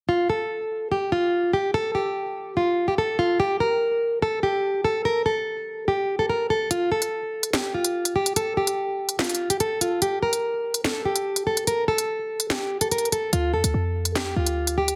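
A dark, fingerpicked nylon-string guitar leads this tense, ominous drill excerpt, its classical acoustic tone sitting up front as it carries the melody from the opening moments. The track moves at 145 BPM in 4/4 with a half-time feel, rooted in D minor. At 6.7 seconds an electronic drill drum kit arrives, bringing a sharp snare, crisp hi-hats and handclaps with a produced, tape-warm character placed prominently in the mix. A short 808-style bass enters at 13.3 seconds as the harmony settles on D minor, its punchy, tight sine tone with a noise layer hitting with a fast attack and then decaying. A moderate plate reverb gives the parts some space, and the overall master is dense and heavily limited in a modern style. The piece is cut from a longer work.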